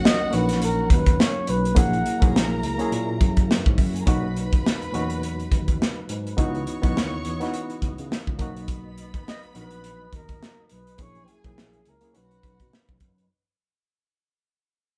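Lush and smooth, this short 1970s-style soul passage moves at 104 BPM in B major, with a swung sixteenth-note feel and a fade-out running through its 13 seconds. A breathy, whispered flugelhorn carries the melody with light vibrato and scooped notes, sounding distant and intimate, playing briefly at the start and returning from 9.3 seconds. Behind it, a studio string section adds a bowed second line with soft attacks, portamento and expressive vibrato, set far back in the mix. A barky, reedy electric piano supplies accompaniment through a fast tremolo, while a mellow tonewheel organ holds sustained chords in the background with key click, percussive attack, chorus vibrato and a fast rotary speaker. A tine electric piano plays the bass line with a clean, warm tone, and an airy, up-front acoustic drum kit with a punchy kick, medium-tuned snare and hi-hat anchors the groove. The harmony circles around Bmaj7, F#7/A# and C#m11, and the band sounds as if playing live together in one room with light reverb.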